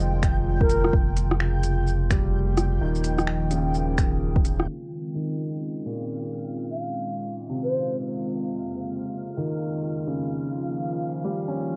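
An overdriven electronic kick with a deep, gritty punch, a round, up-front sub bass and a produced drum kit of finger snaps, smooth hats, rim click and shaker anchor this ghostly, nocturnal future garage fragment, all of them dropping out by 4.7 seconds and leaving a soft, felt-muted upright piano, a warbling, detuned tape-like pad, a reversed, granular swelling texture and brief phrases from a pure, wooden baroque flute with tape echo to drift on through a filter sweep in a cassette-worn haze.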